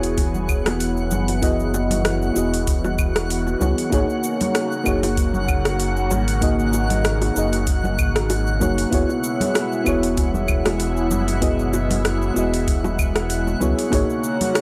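A mellow FM electric piano anchors this wistful, smooth sunset chillout excerpt, its soft, full-bodied tone sitting up front with chorus and analog delay as it carries the accompaniment over sustained 9sus4 chords that shift between F# and G#. At 96 BPM in 4/4 with a light swing on the sixteenths, a round analog bass holds the low end, while an airy, breathy pad drifts beneath with detuned shimmer from chorus and phaser. A deep house drum kit layers cabasa, claves, metallic hi-hats and rim clicks with overdrive and studio reverb, joined at 0.2 seconds by a tape-warm electronic kick and by ringing bongos and congas played with soft hands in the background. High above, a twinkling granular texture adds sparkling octave-up glints with its own built-in reverb. The overall sound is dry and gritty, with a hardware character that gives the smooth groove a slightly rough edge.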